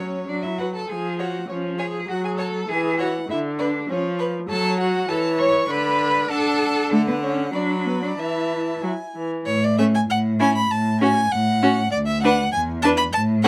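Cheerful and spirited, this quick classical-period movement for string quartet moves at 99 BPM in 2/4 with a rubato feel, settling into A major from 4.5 s. The first violin carries the melody between B4 and B5 with a rich, focused, vibrato-laden tone placed up front, while the second violin shapes a smooth, even second line spanning C#4 to C#6. The viola fills in the accompaniment with a rich, smooth, even sound and vibrato, sitting up front in the mix. The cello anchors the bass from D2 up to C#5, playing expressively with vibrato and portamento, its sound both up front and slightly distant. The harmony passes through chords such as F#m, C#7/E# and Bm/D before a new section begins at 9.5 s on A and heads toward E7(no3). Close, detailed microphones and light reverb give this fragment of a longer piece a clear, detailed presence.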